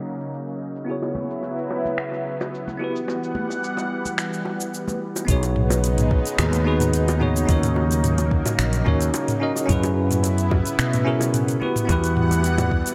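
Sunset chillout in B major at 109 BPM, sunny and smooth, where a bell-like tine electric piano with tape echo and a lush, detuned unison pad with chorus and phaser ride a filter sweep over D#m7, F#7sus4 and Emadd9 chords, joined by a smooth R&B kit of finger snaps, metallic hi-hat, shaker and toms plus very quiet bongos and congas, until a round, punchy fretless bass with analog chorus and a soft electronic kick arrive at 5.3 seconds, all under light reverb and a low-pass filter in this excerpt from a longer piece.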